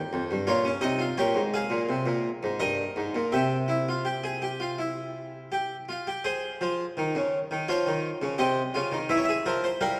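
In a straight, even 4/4, this contemplative and solemn baroque-style fugue unfolds in three voices on a solo harpsichord, an Italian-style instrument with three sets of strings whose plucked tone sounds full and brilliant, set up front and spanning F2 to F5. The opening passage moves from B-flat minor to C before a new section arrives at 6.3 seconds, settling on F minor and passing through E-flat thirteenth to a C seventh over E. A long, wet church reverb surrounds the instrument, lending this brief cut from a longer piece a spacious, sacred air.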